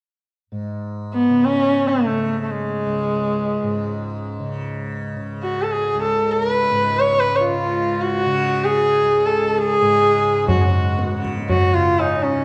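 Hindustani classical music in free time, radiant and devotional, cut from a longer piece and set in a moderate recital hall reverb with a dark production. A bright, buzzing tanpura drone shimmers beneath a rich, focused sarangi that sits up front, bowed with light vibrato and gliding portamento over its sympathetic strings, while a reedy, breathing pedal harmonium enters very quietly at 7.6 seconds as a close, dry second line. At 10.5 seconds a low-tuned, distant tabla joins, its tone ringing in a large room.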